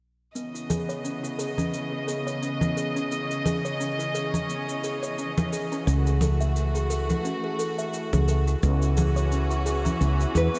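Dark, sul tasto chamber strings hold sustained chords under a gritty, low-passed kalimba arpeggio washed in shimmer reverb and delay, with an electronic cabasa and hard-handed, close congas setting a smooth sunset chillout groove, before a woody, punchy fretless bass enters at 5.9 seconds and a thumb-plucked nylon-string guitar with lush chorus briefly touches a B4 at 10.4 seconds, all in a bright 1980s-style digital production.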